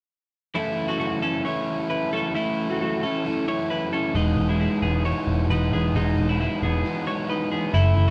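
A straight 4/4 indie pop fragment, breezy and youthful, opens with a biting overdriven guitar accompanying a bright, twangy twelve-string electric guitar that plays arpeggios over F#m7, a dark, round, foam-muted picked bass joins at 4.2 s as the harmony moves to Emaj7, a break arrives at 6.8 s, and a close-miked trumpet with vibrato and scooped notes enters at 7.7 s, the band playing live together in a stone room with moderate reverb.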